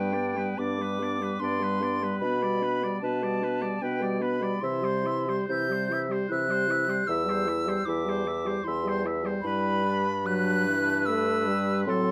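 A dark studio sound with moderate reverb frames this elegiac, yearning slow movement for wind quintet, cut from a longer piece and moving at 75 BPM in a rubato 3/4 over G, G/B, C, C/E and Em/G. Up front, a pure, metallic silver concert flute carries the melody between G5 and G6 with vibrato and a soft attack, while a clear, punchy oboe with light vibrato sings a distant, roomy second line. A mellow, present French horn and a smooth-topped clarinet in the background fill in the accompaniment, and a warm bassoon with light vibrato holds the bass up front.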